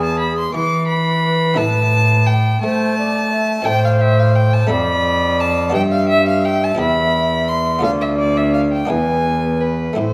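Baroque flute, violin, cello and buff-stop harpsichord sound together from the first beat in this grave, introspective baroque-style sonata movement in A minor: 6/8 at 58 BPM in dotted quarters, tuned to A4 = 435 Hz, with the pure, wooden-toned flute carrying the melody with vibrato alongside the violin's smooth, gut-string second line, a rich, up-front cello bass with an airy bow, and a muted, lute-like harpsichord accompaniment in the background, all in a moderate recital-hall reverb through a progression that moves from E7 to Am and returns to E7 at 8.9 seconds.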